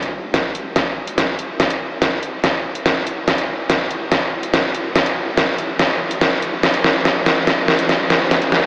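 Menacing and chaotic, this dubstep passage at 143 BPM moves in a half-time 4/4 feel and serves as a build-up carried by a drum fill. Up front, a layered electronic dubstep kit of hi-hat and deep snare plays from the start, while a punchy electronic kick sits in the background from 0.3 seconds. Both drum parts were re-recorded in a large room, and the dreamy mix is soaked in a huge ambient reverb, thinned by a high-pass filter into an AM-radio tone.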